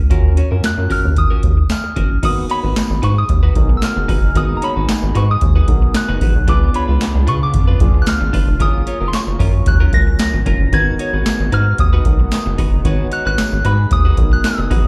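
Over a straight 4/4 groove, this funky, danceable early-eighties boogie funk cut rides a booming analog drum machine with a deep kick, crisp snare, handclaps, metallic hats and crash cymbal, alongside a rubbery, nasal square-wave bass sitting up front. A clean tine electric piano and a dark, picked electric guitar riff both carry slapback echo, while a soft, pure FM synth bell sings the melody through chorus, phaser and plate reverb. A jingly tambourine joins in the background from 0.6 s, and from 2.2 s a smooth sawtooth pad holds sustained chords there too, all heard as a live club gig through the venue's PA.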